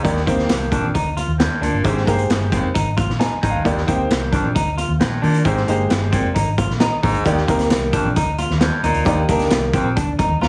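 Heavily compressed, radio-like sound with light small-room reverb frames this joyful, danceable 1960s-style soul excerpt at 133 BPM in Eb major, where an up-front, saturated vintage drum kit and a dark, foam-muted, punchy fingered bass drive a raspy, forceful baritone saxophone riff and a slightly broken-up, picked electric guitar riff through a small old amp, while a clear, worn grand piano accompanies with fills at 3.0, 6.6 and 10.2 seconds and very quiet, high-tuned congas ring underneath over Ebmaj7 and Abmaj7 chords.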